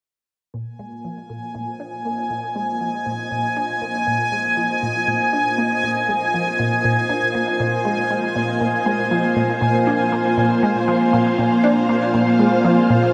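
Over a straight 4/4 pulse at 119 BPM, this hypnotic, cosmic piece of sequencer-driven space music is cut from a longer work. From 0.5 s, a full-ensemble string machine fades in with lush, vintage, full-bodied sustained chords on a Bb7sus4, its mellow sawtooth tone thickened by a sub octave and ensemble chorus and sitting up front. A juicy, squelchy blip pluck fades in alongside it with a riff in the lower register, its resonant, detuned pulse-and-sawtooth tone carrying a noise layer and a fast, decaying attack, colored by phaser, lush chorus and delay. At 1.4 s a bright, bubbling texture joins on a high Ab, its resonant filter stepping at random with a slow attack and long release. The strings, pluck and texture each carry shimmer reverb, and the whole mix is soaked in a huge, dreamy ambient space with a reverb tail of 8.1 seconds, lasting to 13.1 s.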